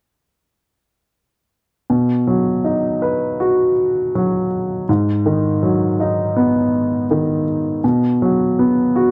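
A baby grand piano enters at 1.9 seconds with polished, up-front accompaniment of short sustain, moving from B to G#m7 to B5 in a tender, heartfelt pop fragment in B major at 81 BPM, its close, dry 1970s-style studio sound touched by light reverb and studio ambience.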